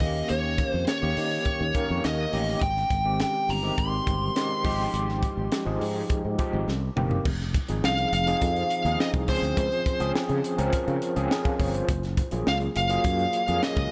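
Polished 1980s jazz-funk pop with a slick, urban mood, moving at 104 BPM in a straight 4/4 and shifting from F minor to F phrygian at 7.3 seconds. A dark, smooth overdriven lead guitar carries the melody over a barky, gritty tine electric piano with fast tremolo and analog chorus, while a growly, sustaining fretless bass glows under lush chorus and a crisp fusion kit with bright cymbals, high-tuned snare and punchy kick pumps in a small room. A drum fill at 6.7 seconds ushers in the change, and the harmony glides through rich seventh and ninth chords from Eb7 to Gbmaj9 in this short cut from a longer piece.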